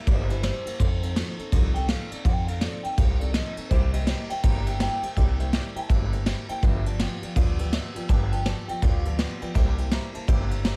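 A twangy, bright electric guitar through a small old amp takes a clean solo across this rollicking, rowdy rockabilly excerpt, its slightly broken-up tone carrying subtle chorus and tape echo over a swung 164 BPM in C mixolydian, moving through C7, F7 and G7. Underneath, a vintage brush drum kit sits up front with dark cymbals and a punchy kick, a thumpy gut-string upright bass plays pizzicato, and a full-bodied picked dreadnought acoustic guitar supplies accompaniment. A mellow, short-sustained upright piano joins in the background at 3.7 seconds, all captured dry in a studio room.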